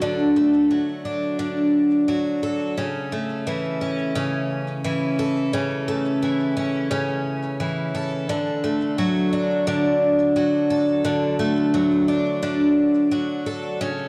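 A dark, warm production places a single picked twelve-string acoustic guitar up front in a moderate concert hall, its reverb lingering for about 2.0 seconds. This short folktronica excerpt moves at 87 BPM in a straight 4/4 feel, settled in D major and tuned slightly low to A4 = 438 Hz. The guitar plays solo throughout the 14.1 seconds, ranging from C#3 to A4, with fresh strings giving it a bright, shimmering, octave-doubled ring and a touch of digital delay. Finger squeaks surface amid the picked notes, adding a human texture to the pastoral mood. The harmony rests on D, passes to A/C# at 2.8 seconds, and returns to D at 8.3 seconds.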